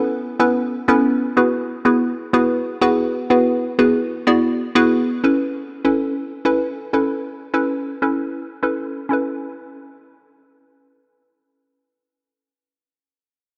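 A straight 4/4 pulse at 124 BPM drives this carefree, euphoric pop passage in A major, cut from a longer track, with a drop running from the start to 5.2 seconds. A hollow, bouncy square-wave pluck carries the accompaniment throughout, detuned and mellow, with a fast attack and decaying filter pluck, colored by chorus, phaser and a low-pass filter, sitting up front as the harmony moves from Aadd9 to Eadd9 and returns to Aadd9 at 5.2 seconds. A lush hall reverb with a 2.9-second tail surrounds it in a dark production.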